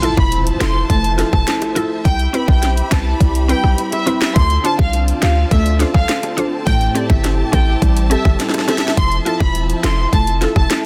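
An impact sound effect opens this tough, hypnotic dancehall excerpt at 104 BPM, alongside an up-front electronic drum kit with a tight kick, sharp snare, dark hats, rim clicks and handclaps, plus very quiet high-tuned bongos, with a deep, boomy sine 808 bass arriving at 0.2 seconds. A distant studio violin section carries the melody with vibrato and tape echo over a woody, round FM synth pluck with chorus, thumb-plucked flamenco guitar arpeggios, and lush symphonic strings holding sustained chords with portamento and sidechain pumping. The chords cycle through Fmaj7, Cmaj7, Dm7 and Am7, a drum fill lands at 8.4 seconds, and the dense, heavily limited mix sits in studio reverb.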